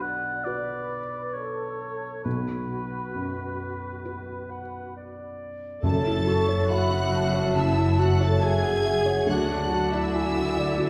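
A felt-muted upright piano, sitting up front with a dark, intimate tone and audible action noise, opens this bittersweet cinematic fragment together with a soft-attacked oboe and a concert harp. Around the piano, the oboe and a pure, rolled-off flute section trace second lines while the harp rings out arpeggios in the background over a B minor chord. A vintage-toned clarinet slips in very quietly at 3.2 seconds, and the rubato pulse hovers around 66-71 BPM in 4/4. At 5.8 seconds the music settles into F# minor and the strings arrive: a close, expressive violin section carries the high melody with vibrato, a bright, intense second violin section sits further back, and a smooth viola section, focused cellos and rich double basses fill out the harmony and bass beneath a mellow French horn section holding sustained chords. Round calf-headed timpani struck with soft mallets sound briefly from 5.8 to 7.1 seconds over the F#m7 chord, before the harmony moves to D at 9.3 seconds. 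The whole ensemble is heard from further back in a wet concert hall, lending the longing mood a spacious glow in this short cut from a longer piece.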